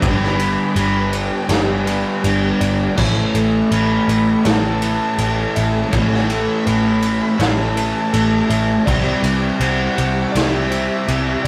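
Shoegaze-tinged dream pop rock in a dreamy, wistful mood, this brief clip sets a pure, vibrato-laden flute melody against swirling, phased string-machine chords, compressed clean guitar arpeggios, a double-tracked crunchy guitar riff backed by two further overdriven guitars, a round, foam-muted picked bass and an up-front, gritty garage drum kit with boomy kick, snare, ride and crash, all moving from G to A and onto Cadd9 in a rough, saturated rehearsal-room sound.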